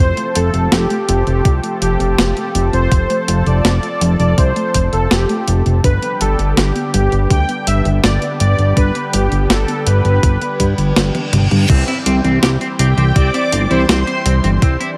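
A dreamy, nostalgic synthwave passage cut from a longer piece opens with a smooth, detuned supersaw melody with delay over a silky, sidechain-pumped analog string pad, dark round pluck arpeggios under a filter sweep, and a fat sawtooth bass, soon joined by an overdriven 12-bit drum machine of snare, hi-hat, toms and crash and a thumpy kick with a small-room character, until a reverse cymbal and drum fill carry it at 11.7 seconds onto a C chord, where a clean, bright semi-hollow guitar riff enters with lush chorus and delay and shimmering string-machine violins add a second line in the background.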